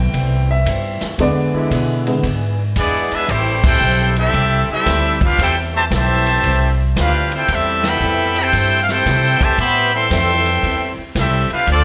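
Heard through a club PA with light reverb and a small-room feel, this swinging big band jazz passage, cut from a longer piece, moves at 114 BPM in A minor with a sultry mood. A baby grand piano with slapback echo leads the opening over sustained, close-miked trombone chords with vibrato, both stopping at 2.2 seconds as the harmony moves from Am7 to E7. Underneath, a woody, thumpy pizzicato upright bass on gut strings sits up front. It is joined by a drum kit with punchy kick, medium-tuned snare, ride, hi-hat and crash, plus a very quiet, boxy picked archtop guitar with faint finger squeak. At 2.8 seconds a brilliant trumpet section takes the melody with light vibrato, a soft attack and slapback echo, while a clear, vintage-toned trombone section plays a tight second line beneath it, the band adding accents as the chords settle back on Am7.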